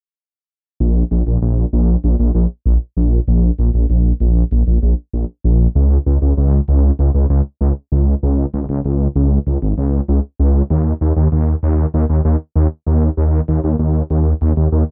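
Synthwave at 97 BPM in a straight 4/4, this driving, moody fragment of a longer piece features a lone detuned saw bass, thick and lush with a chorus shimmer and a fast attack, holding sustained notes between Ab1 and Eb2 from 0.8 to 14.8 seconds, sitting up front in a dry mix with little reverb.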